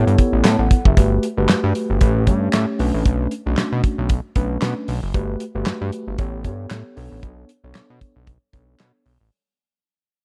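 Early-eighties boogie funk at 115 BPM with a light sixteenth-note swing and a smooth, danceable mood, this short cut from a longer piece pairs a fat, detuned sawtooth analog bass with a filter pluck, placed up front, against mellow, clean tine electric piano chords moving through A9, Gmaj9 and Bm9, while a damped, dry 70s drum kit with tight kick, medium-tuned snare, hi-hat and handclaps drives it all in a close, nearly reverb-free sound that fades out from 1.0 seconds.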